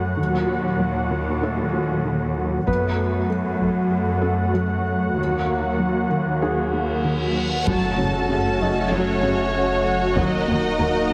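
Cinematic hybrid orchestral and electronic film score at 96 BPM in 4/4, set in F# dorian and tuned to A4 = 436 Hz, with a futuristic, relentless mood in a passage cut from a longer piece. It opens as a build-up: an up-front, detuned sawtooth analog pad holds chorused chords over a lush, vibrato-rich cello section carrying the bass. A felt-muted upright piano adds intimate texture in the background, its action noise audible through a digital delay, while a dark, very quiet pluck traces arpeggios and a taiko ensemble strikes with heavy sticks briefly from 2.7 s, returning at 7.7 s. A reverse cymbal rises at 6.7 s into an electronic impact at 7.7 s. A distant violin section enters at 7.4 s with the smooth melody, and at 7.7 s the rest of the orchestra arrives: a clear, intense second violin line sounds beneath it, violas and mellow French horns fill out the harmony, and a punchy sub bass with a pitch-drop attack joins a very quiet double bass section underneath as the chords move between D#m and F#m. 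Everything sits in a wet concert hall reverb, heavily compressed into a dense, radio-like sound.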